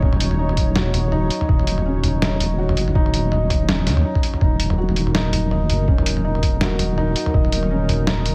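Half-time drum and bass at 164 BPM in Ebm, this dark, spacious excerpt swings its 16ths over a deep, wobbling sawtooth-and-sine bass with chorus sitting up front, beneath a moody, evolving analog pad whose sustained, detuned chords carry chorus and sidechain pumping. A soft, felt-muted upright piano plays mellow, intimate arpeggios through dub echo, its action noise audible. Gritty, pitched-down sampler-style drums add a thumpy electronic kick that stops at 7.4 seconds and a tape-warm boom bap kit of hi-hat, toms and a medium-tuned snare placed up front, all in a dry mix.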